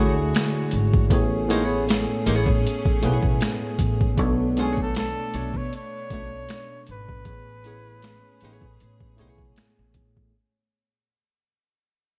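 A slow 78 BPM groove in 4/4, with a light 16th-note swing, sets the pace for this introspective, sultry neo-soul and R&B passage taken from a longer piece. From 0.3 s the boom bap sampler-style drum kit sits up front, gritty, compressed and pitched down, with a thumpy kick, a high-tuned snare, hi-hat and finger snaps, all overdriven and re-recorded in a large room. Beneath it, a woody pizzicato upright bass holds the low end. A worn, slightly out-of-tune tine electric piano plays the accompaniment through a combo amp with a barky, lightly overdriven bite. Alongside it from the start sound a fingerpicked nylon-string guitar second line with audible finger squeak, and a bowed string section whose reedy gut-string tone and smooth top hold sustained chords. The harmony moves from Dmaj7 to Amaj9, and at 4.6 s a warm flugelhorn steps forward as a jazz-style solo melody, its scooped notes and vibrato floating over Bm9 and the return to Amaj9. 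The dark production, with light reverb and small room ambience, fades out across the whole passage.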